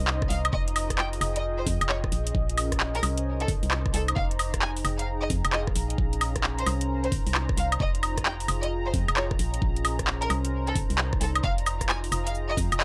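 A skippy two-step garage groove at 132 BPM in 4/4, its sixteenths swung at 64%, runs through this soulful F minor fragment cut from a longer piece, with the garage drum kit's handclaps, metallic hi-hats, rim clicks, shaker and woodblock sitting up front from 0.1 seconds and a knocking electronic kick arriving at 0.2 seconds. Underneath, a hollow, organ-like FM bass with a fast, decaying attack holds the low end, dark and forward in the mix. Two sawtooth pads run throughout, each with chorus and sidechain pumping: a smooth, detuned analog pad sits in the background on high sustained chords, while a warbling, nostalgic lo-fi pad with its own reverb adds a mellow textural haze. From 0.3 seconds a lush symphonic violin section plays the melody with vibrato and tape echo, bowed and even. The chords cycle through Cm9, Fm9 and Bbm9, and the whole take has a dry, gritty hardware sound with little room around it.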